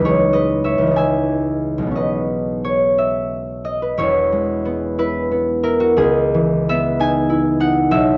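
Dreamy and serene, this short classical piece for solo concert harp drifts at a slow 61 beats per minute in a lilting 6/8, with uneven beats and a free rubato that lets each phrase breathe. The harp sits up front, fingerpicked, mellow and ringing, with its range reaching from a deep E1 up to G#5. Set in E major and tuned slightly below standard pitch, the harmony opens on C#madd9, turns to E6 at 4.0 seconds, and settles on C#m9 at 6.0 seconds. A moderately large studio reverb surrounds the instrument, and the dark production gives it a gentle glow. The recording is an excerpt taken from a longer work.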